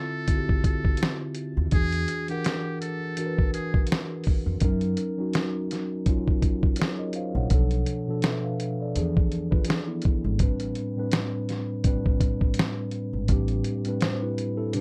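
Dry, dark production frames this nostalgic, melancholic lo-fi hip hop cut at 83 BPM with a gentle swing. A buzzy, thin trumpet in a metal mute plays a brief jazz melody with scooped notes and light vibrato until 3.9 seconds, over a clean, up-front tine electric piano moving through chords from Dm9 to Am11, a muffled, pitched-down sampler drum kit with a thumpy kick, and a woody pizzicato upright bass on gut strings from 1.6 seconds, while a second mellow electric piano line, heard through its built-in speakers with analog delay, enters at 9.5 seconds.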